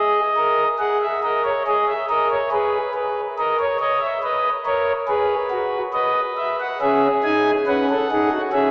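In a straight 4/4 at 70 BPM, this serious, solemn cut from a longer baroque-style four-part fugue features a solo pipe organ on a principal stop, played up front with warm, smooth baroque voicing and chiff, ranging from C#4 to G#5 and moving through G#m and D#5/A# toward C#m over 8.7 seconds. It is tuned to A4 = 441 Hz and bathed in a wet cathedral reverb of 5.8 seconds, with the recording heard from further back in the room with a small-speaker sound.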